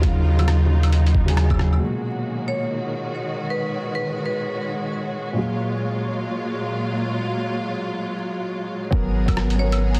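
A deep, round sub bass pumps beneath lush, bowed symphonic strings and a dark, woody upright piano with audible action noise and digital delay in this rainy, nocturnal future garage excerpt at 135 BPM in G# dorian with a swung 16th feel, as the bass, a muffled, overdriven, sampler-style kick and a pitched-down lo-fi kit of claves, hi-hat and rim click drop away by 1.8 seconds, while a flickering granular texture and a bright hard-mallet marimba with 12-bit grit join the strings and piano through the middle before the low end returns at 8.9 seconds, the mix set against vinyl crackle in a dense, heavily limited master.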